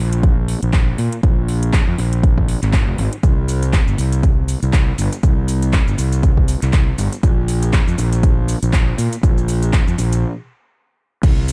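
A dark, warm digital sheen frames this late-night deep house excerpt, with a swung groove carried by an up-front, overdriven electronic kick that sounds deep and layered, as if re-recorded in a large room. A growly, bright fuzz bass with tube saturation and sidechain pumping sits just as close, while a tape-softened house kit adds metallic hi-hats, handclaps, shaker and a crash cymbal in a small room. The whole groove halts for a stop between 10.2 and 11.2 seconds.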